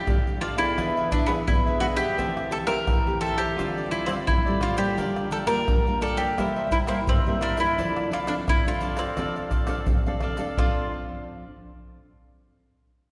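A festive, sunny samba and choro excerpt in F major at 86 BPM, where a bright, picked bowl-back mandolin with double strings carries the melody up front over a fingerpicked nylon-string guitar with audible finger squeak, a crisp cavaquinho entering at 0.4 seconds, and close, hard-handed tube shaker, pandeiro, tamborim and deep surdo, all set in the long, wet reverb of a church or concert hall.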